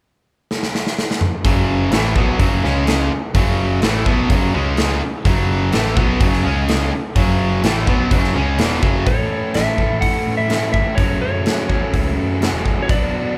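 A straight feel drives this brooding, swaggering classic rock fragment, taken from a longer piece, with a big acoustic drum kit opening on a fill at 0.5 seconds, its punchy kick and medium-tuned snare sitting up front alongside hi-hat and toms. At 1.4 seconds two distorted electric guitars and a picked electric bass crash in together, the guitars grinding out a riff that shifts between F#m and C#5. One guitar is bright, compressed and pushed forward, reaching from low E2 up to A4, while the second adds an overdriven layer before dropping out, and the amped bass growls underneath in the low register. At 9.1 seconds the harmony moves to A and back to F#m as a dark, slightly broken-up lead guitar enters with a compressed, picked melody high up between C#5 and F#5. The band sounds as if playing live together in one large studio room, wrapped in a moderate reverb that adds weight and space.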